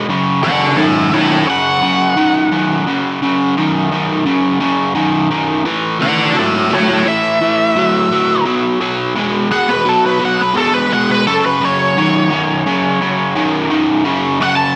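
A light reverb gives this short cut from a longer rock piece a compact, up-front sound, with both guitars placed close to the listener. It moves at a straight 86 BPM in 4/4 in F# dorian, and the mood is brooding and driving. A bright, double-tracked overdriven electric guitar plays a low, compressed, picked riff from the start, sitting between F#2 and G#3. From 0.4 seconds an octave-fuzz lead guitar carries the melody as a solo between A4 and A5, its dark, picked tone shaped by wah and distortion. The harmony moves from F#5 to A at 5.7 seconds, then to B5 and back to F#5 before the passage ends at 14.8 seconds.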